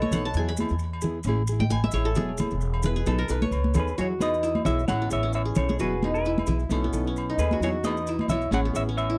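The qanun's bright, plectrum-plucked arpeggios open this carefree highlife guitar band excerpt, sitting up front with a tape echo and taking a solo spot for the first 4.0 seconds. Around it, a woody, thumpy upright bass, high-tuned congas with a thin, damped skin and a fingerpicked nylon-string guitar start together, while agogo bells ring in the background and grainy maracas add texture. At 132 BPM in 4/4 with a light swing on the sixteenths, the band cycles through Eadd9, Amaj7 and B7 in E major. At 3.8 seconds a semi-hollow electric guitar enters with a dark, clean, scooped melody, fingered and placed up front alongside the qanun. The sound is that of a dry, close 1970s-style studio with light reverb, and the clip is cut from a longer piece.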